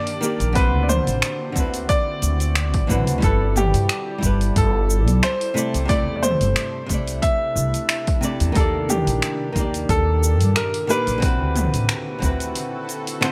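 Sunset chillout at 90 BPM in 4/4, with a gentle 16th-note swing and a relaxed, sunny mood, taken from a longer piece. A smooth, vintage-toned grand piano carries the melody through tape echo, while a fingerpicked flamenco guitar accompanies through digital delay. Beneath them, a shimmering, ethereal pad holds sustained chords with slow attacks and long releases, with chorus and built-in reverb, mellow in the background. A deep house drum kit of finger snaps, dark hi-hats, shaker and toms enters at 0.1 s, and a punchy electronic kick follows at 0.6 s, both with a layered, produced character. Pizzicato upright bass, woody and warm, supports the harmony as it moves from Ebmaj7 and D13 through G69 and C69, and light digital ambience surrounds the whole track.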